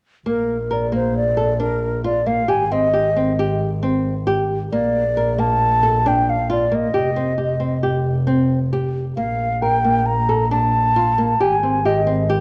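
Contemporary chamber music in a restless, playful 5/4 at 135 BPM in Bb major, cut from a longer piece, where a breathy, mellow concert flute with vibrato and crisp attack carries the melody over fingerpicked arpeggios from a woody flamenco guitar with old strings and a dark, nasal, bowed double bass with gut-string tone, all three up front in a moderate recital hall reverb and colored by worn, warbling cassette tape pitch drift, as the harmony moves from Bb through Abmaj7, Bbmaj7 and Fsus2.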